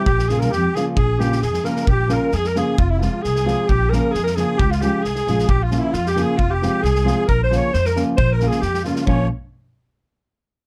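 Virtuosic and restless, this Balkan wedding-band folk piece moves at 133 BPM in 2/4 with a light sixteenth-note swing, circling Bbm, Fm and Db chords in a dry mix with little reverb. A warm alto saxophone with vibrato carries the classical-style solo melody from a distant, roomy position, while a reedy, shimmering musette accordion in wet tuning plays a second line. Up front, a dark, thumb-plucked nylon-string guitar with fresh strings and a woody pizzicato upright bass anchor the accompaniment, joined by a loose drum kit with a tight kick and medium-tuned snare in a pumping small room.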